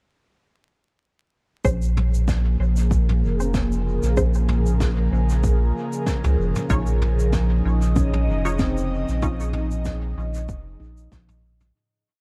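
A dark, small-room sound dusted with vinyl crackle frames this spacious, deep ambient dub piece, its groove settling in at 1.6 seconds over slowly shifting Bbm9 and Dbadd9 chords. A round sine sub bass sits up front beneath an airy, breathy pad treated with chorus and phaser, while muted, detuned dub chord stabs scatter sparse phased echoes and a soft, overdriven electronic kick stays in the background. A jazz brush kit adds a sparse, swung, echoing beat on snare, low tom and shaker, and from 8.0 seconds a mellow, ringing handpan plays two slow loops of unequal length that drift against each other as the piece fades out from 8.4 seconds.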